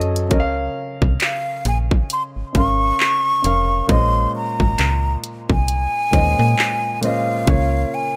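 A warm grand piano, a snappy, metallic FM slap bass and an up-front trap kit of hard-clipped kick, bright hi-hats and handclaps open this dry, romantic and dreamy fragment of contemporary R&B at 67 BPM in Db major, with a swung sixteenth-note feel and chords moving from Db6 to Bbm11 and back, before a breathy, hollow jazz flute with vibrato and tape echo enters at 1.2 seconds to carry the melody.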